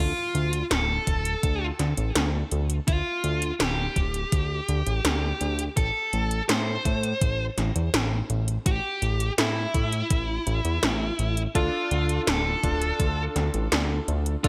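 A dark, distorted high-gain lead guitar carries the melody with delay over a fat, detuned sawtooth bass that pumps with sidechain, metallic hats and a gated snare from 0.3 seconds, a thumpy overdriven kick from 1.1 seconds, and clangy, chorused electric grand piano stabs with delay arriving at 11.6 seconds, in this driving, moody synthwave excerpt in D minor at 83 BPM with bright 1980s-style digital ambience.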